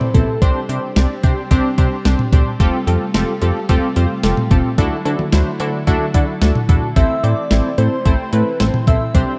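A soft, round synth lead opens this melancholic, nocturnal synth-pop piece in A minor, sounding gentle and keys-like with chorus and tape echo. It is accompanied from the start by a punchy, warbling polysynth comp, a mellow string-machine viola pad set in the background, and a clean 12-bit drum machine with a thumpy kick, medium-tuned snare, hi-hat, toms and cowbell. The drums are overdriven, sampler-style and up front, with the sound of a small room. A glossy, retro chorused synth bass with a quick plucked attack settles in beneath at 0.1 seconds. At a straight 110 BPM in 4/4, the harmony moves through Csus2, Fadd9 and Dadd9 to Am, and the lead melody returns at 7.0 seconds over the Am chord. Light reverb and a dark, warm production give this excerpt, cut from a longer piece, a nocturnal feel.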